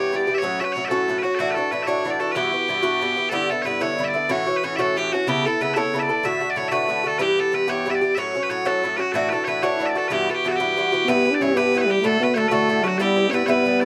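Lightly reverberant and up front, this dark, wild and lively Celtic folk excerpt in E Dorian moves at 124 BPM in a straight 6/8, with piercing bagpipes carrying the continuous melody over the metallic, picked double strings of an Irish bouzouki, until a warm French horn with light vibrato enters at 11.1 seconds to add a classical-style second line as the chords settle between Em and D.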